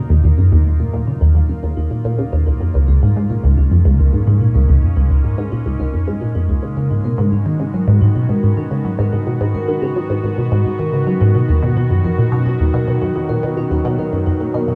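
A steady, straight 4/4 pulse drives this cosmic, hypnotic piece of sequencer-driven space music, cut from a longer work. Up front, a resonant blip pluck repeats a low riff, its juicy, squelchy, detuned sawtooth-and-triangle tone shaped by ring modulation, a fast attack and a short decay, then coloured with phaser, lush chorus and analog delay. Behind it, a vibraphone played with soft mallets and the motor off traces mellow, metallic arpeggios through analog delay, fading in across the whole passage with a boxy small-room character. An evolving wavetable pad also fades in beneath, holding morphing, warbling chords with a slow attack and long release, its vintage, full-bodied sine tone thickened by chorus and built-in reverb. The harmony moves from Ebmadd9 through Db6 and Abm7 to B at 11.4 seconds, within a dark production and a moderate hall reverb of 3.0 seconds.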